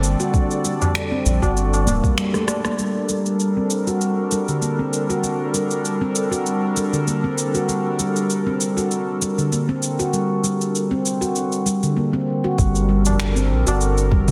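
Meditative and mystical, this organic downtempo cut from a longer piece moves at 98 BPM in G harmonic minor with a light swing, built on an airy, breathy pad with chorus and sidechain pumping that sustains chords from the opening Gmadd9 throughout, while a close-miked handpan with nitrided-steel ring plays mellow arpeggios through a low-pass filter and digital delay. A deep, round analog bass with tube saturation sits up front at the start alongside a soft electronic kick, and both return at 12.6 seconds, joined by a high-tuned, vintage tabla, while electronic cabasa, finger snaps and a rim click with soft clipping on the snare carry on beneath. A drum fill and band accent mark the close of the opening around 2.8 seconds, and the whole sits in a lush hall reverb with a dense, heavily limited modern master.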